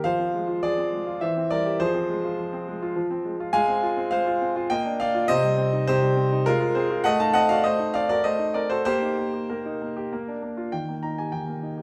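A classical-period piano sonatina excerpt in Eb major, elegant and playful at 102 BPM in a straight 3/4, played by a solo concert grand that sounds clear and up front, with deep bass and long sustain across a range from C3 to Bb5, set in a wet recital hall reverb, its harmony moving through shadowed minor and diminished chords before settling onto Eb as a new section begins at 10.7 seconds.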